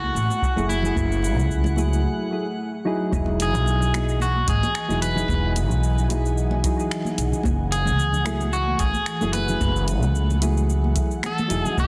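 A drifting, glassy texture of overtones hovers over an ethereal, airy pad at the start of this relaxed sunset chillout excerpt, while a slightly broken-up, twangy electric guitar picks out the melody with digital delay. Underneath, a woody, pizzicato upright bass sits up front, and soft-handed congas murmur in the background. Within the first second, a layered, overdriven deep house kit of cabasa, finger snaps and hi-hat arrives, followed by a deep, dry electronic kick and round, mellow electric-piano-like synth keys coloured by chorus and tape echo. The glass texture drops out at 2.1 s, a brief break follows, and from 3.1 s the piece moves into a new section, keeping its lightly swung sixteenth-note feel. The mix has light digital ambience and a dense, heavily limited modern finish.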